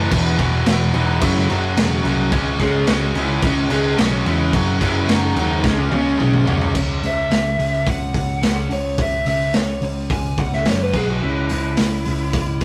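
Opening with a very quiet, flute-like tonewheel organ holding sustained chords through a slow rotary speaker, a bright high-gain distorted guitar riff, a sludgy overdriven guitar riff in the background and a growly picked bass, this aggressive, heavy hard rock piece in C# minor at 108 BPM brings in a gritty, up-front garage drum kit with dark cymbals and a punchy kick, then a lo-fi lead guitar through a small cranked amp with slapback echo that carries the melody and takes a solo from 6.8 s after a drum fill, as the organ and high-gain guitar drop out, all captured in a rough rehearsal-room recording with warm saturation.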